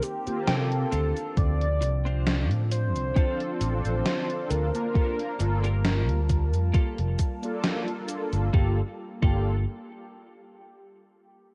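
Vaporwave excerpt in G minor at a slow 67 BPM in 4/4, with a lightly swung sixteenth feel and a hazy, melancholic mood, moving from Eb6 to Dm7 and settling on Gm9 at 5.0 seconds. A velvety, smooth synth lead carries the melody with chorus, vibrato and tape echo, while a warbling, lo-fi pad sits in the background holding detuned sustained chords with a slow attack and long release. A clean, compressed electric guitar plays a chorused riff with tape echo, opening with a fill, and a dark, brassy synth section with 12-bit sampler grit and a filter sweep supplies accompaniment. Up front, a growly, amped fingered bass anchors the low end, joined at 1.4 seconds by a thumpy, overdriven electronic kick. A gated 80s drum machine adds cabasa, hi-hat and a snare with gated reverb and overdrive, and the mix carries a cassette-tape character with light reverb and digital ambience.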